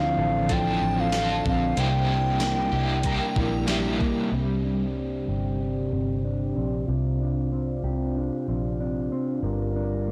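Hazy and ethereal, this straight 94 BPM dream pop excerpt in 4/4 opens with an airy bamboo bansuri singing a tape-echoed, vibrato-laced melody until 3.7 s, over a hollow-body overdriven guitar with tremolo and lush chorus, a soft flute-like tonewheel organ holding chords through a slow rotary speaker, dark chorused guitar arpeggios, and a round, punchy foam-muted bass up front, while a thumpy gated 80s drum machine and a faint, bright FM bell with a shimmering halo play from 0.5 to 4.2 s, all moving through Dm9, C7, Csus2 and Gm7 in a blown-out, overdriven mix with light digital ambience.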